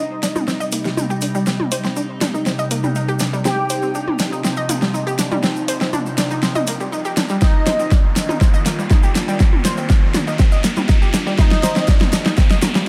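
Dark and cinematic, this excerpt of melodic techno in C minor at 121 BPM builds from Cm to Eb over an evolving, morphing wavetable pad with phaser, bright chorused analog pluck arpeggios with tape echo, a very quiet punchy sawtooth bass, an overdriven deep house kit with a fat snare, hi-hat and toms playing a drum fill throughout, grainy distant maracas, and a background riser from 2.7 s, while brief juicy polysynth melody phrases joined by a smooth supersaw second line recur from 3.5 s and a deep, overdriven electronic kick enters up front at 7.4 s, all in a moderate recital hall reverb.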